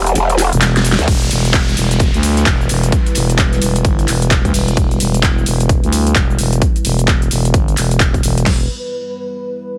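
Heavily compressed and radio-like, with little reverb, this aggressive, bouncy bass house excerpt runs at 130 BPM in E minor on a single Em chord, its 16ths swung. It opens on a drop: a bright, wobbling growl bass with formant filtering, saturation and chorus pumps over a punchy, snare-and-hat big-room kit of handclaps and cabasa, while a faint, dry 70s acoustic kit with a fat, rolled-off snare ticks beneath, and the kick drops out as a drum fill leads in. A thick, sine-based FM bass growls in at 0.5 seconds and takes over the low end, overdriven and pumping, with a filter sweeping across it. At 1.1 seconds a second overdriven, layered kit arrives with a kick, huge snare, crash and metallic hats, as an electronic downlifter comes in. Beneath it all a deep, moody pad of detuned sawtooth unison and sub octave, held in sustained chords with slow attack, long release, a moving notch and its own filter sweep, breathes with sidechain pumping.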